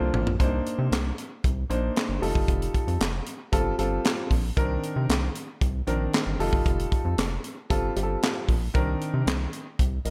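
A snug small-room sound with light reverb puts every part up front in this slick, late-night slice of early-eighties boogie funk, cut from a longer piece. A tight funk drum kit enters a split second after the bass and piano with a brief fill, its high-tuned snare, tight kick, hi-hat, toms and handclaps carried on a gated reverb that keeps the acoustic kit punchy and natural. Underneath, a rubbery square-wave bass bounces with a hollow, resonant filter pluck, its fast attack giving way to sustained, dark notes. A concert grand piano supplies warm accompaniment with a deep low end, voicing a looping progression of Cm9, F9 and G9sus4 that returns to Cm9. The three parts play together through the ten seconds at a straight, steady groove in 4/4.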